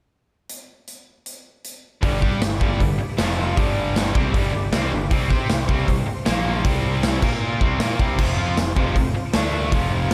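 Energetic and powerful, this hard rock cut from a longer piece drives at 156 BPM in a straight 4/4, opening with a big, natural-sounding acoustic drum kit alone from 0.5 seconds, its bright cymbals, medium-tuned snare and punchy kick sitting up front. At 2.0 seconds the band crashes in: a double-tracked high-gain distorted guitar plays the riff with slapback echo, backed in the background by a bright overdriven guitar and a tight distorted guitar, while a fuzzy, overdriven picked bass punches underneath. A very quiet, silky analog string pad with detuned sawtooth tone, ensemble chorus and phaser holds sustained chords above, as the power-chord riff moves through G, F5, C5, Bb5 and D5 in a lightly reverberant studio space.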